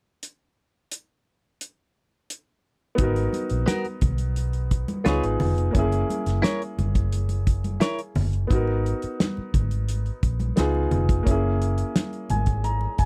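A dry, close 1970s-style studio sound frames this short cut of lush, smooth and bittersweet soul in G# minor at 87 BPM. It opens on a small-room drum kit with a tight kick and a rolled-off top, and at 3.0 seconds a round, dark, foam-muted electric bass, a warm vintage grand piano and thin-skinned congas set back in the mix join over G#m9, C#7 and F#7 chords. A bright, twangy, compressed clean electric guitar, picked and coloured by phaser, adds a riff in the middle, and the piano closes with a fill from 12.0 seconds.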